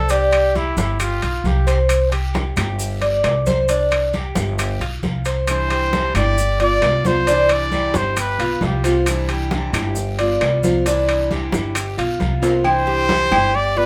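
In a moderately ambient studio sound, this sunny, danceable Cuban son and guajira excerpt at 134 BPM in C major sets an intimate, whispered trumpet melody up front over metallic double-string tres arpeggios, a dark, thumpy pizzicato upright bass, ringing low-tuned congas, saturated timbales and agogo bells, grainy maracas, a raspy guiro in the background and very quiet woody claves, with a picked steel-string acoustic guitar joining at 5.5 seconds and a drum fill at 12.4 seconds.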